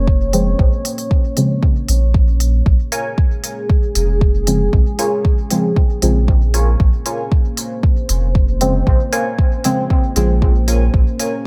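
A hazy, meditative stretch of dub techno opens on a deep, warbling ambient pad with chorus and a slow attack, set over a round, soft sub bass that sits up front, both breathing with sidechain pumping as a deep electronic kick and smooth hi-hats arrive almost at once. Mellow chord stabs with ring-modulated, decaying tones drift through phaser and dub echo, and at 2.9 seconds a muted, detuned filtered stab joins as a riff in a higher register, swirling in its own echoes. The whole excerpt hovers on a single Bbm7 chord in light digital ambience, cut from a longer piece.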